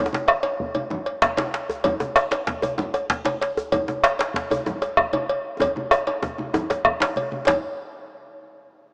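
A rough home demo mix with a small-speaker sound sits inside a long, wet plate reverb in this festive, powerful excerpt of West African traditional drumming. The ensemble moves at 128 BPM counted in dotted quarters, in a straight 12/8 feel. The round, close bombo enters at 0.3 s alongside a metallic, close cowbell and sits up front as the most prominent drum. Two djembes play from the start: one tight, cracking and dry with metal rattles and hard hands, the other medium-tuned with a vintage, band-limited tone. Low-tuned congas with a thick skin, also struck with hard hands, lend a thick, vintage body further back in the mix. A drum fill from 5.6 to 7.5 s carries the groove into a brief new section before the cut.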